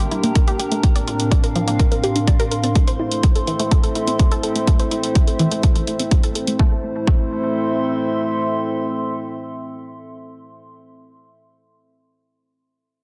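A punchy, layered, tape-warm electronic kick drum sits up front from 0.4 s to 7.2 s in this cinematic, melancholic melodic techno excerpt at 125 BPM in A phrygian, beneath a lush, detuned sawtooth unison pluck playing filter-swept arpeggios through phaser and tape echo, a quieter analog electronic hi-hat that stops at 6.6 s, a deep, nasal dark analog pad holding chorused sustained chords, and a lo-fi, warbling tape-like pad with chorus and its own reverb, the two pads and the pluck pumping against the sidechain as the harmony moves from Gm through Bbadd9/A to Am in a dense, heavily limited master set in a moderate recital-hall reverb.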